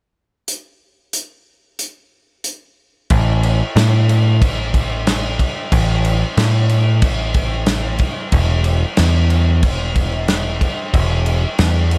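A lightly reverberant, up-front sound frames this wistful, blissful shoegaze and dream pop cut, moving at 92 BPM in a straight 4/4 and taken from a longer piece. A loose indie drum kit opens at 0.5 seconds with kick, snare, hi-hat and crash, its small-room tone warm and rolled-off at the top with a medium-tuned snare and tight kick. At 3.1 seconds a growling picked electric bass joins, bright and overdriven, ranging from E1 to A2 through the close at 12.0 seconds.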